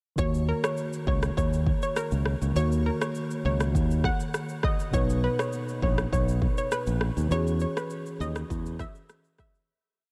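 Joyful and romantic, this short afrobeats piece sets a hollow, detuned square-wave pluck playing a syncopated hook through chorus and diffuse ambient delay over held, spread chords on a worn, slightly out-of-tune tine electric piano, a punchy, bright fingered bass line that bounces with syncopation and slides, and an up-front electronic drum kit whose deep kick, syncopated rim clicks and shaker carry overdrive and gritty 12-bit sampler crunch, all in light reverb before a fade-out from 7.3 seconds.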